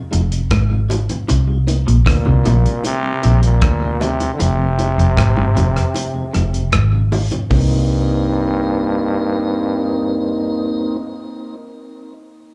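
A straight, unhurried four-beat pulse anchors this meditative, hypnotic roots reggae passage, cut from a longer piece and heard as a live gig through the venue's PA with light club reverb. The foam-muted, fingered vintage bass sits up front, dark, round and punchy, while the cloth-damped kit sounds thuddy and gritty with a tight kick, hi-hat, rim click and toms. Low-tuned bongos add soft-handed, compressed color with slapback echo in the background. A mellow tonewheel organ with key click and a slow rotary speaker carries the Fm7 and Cm7 chords through tape echo, and a clean hollow-body electric guitar plays a riff in the background, thickened by ensemble chorus and slapback echo. From 2.1 seconds a raspy, growling trombone takes the solo melody with scooped notes, vibrato, and both tape and slapback echo on its lines. The guitar drops out during the break from 6.0 to 7.5 seconds, and the drums and bongos fall away just after it, leaving organ, bass and trombone to carry the closing stretch until 11.0 seconds.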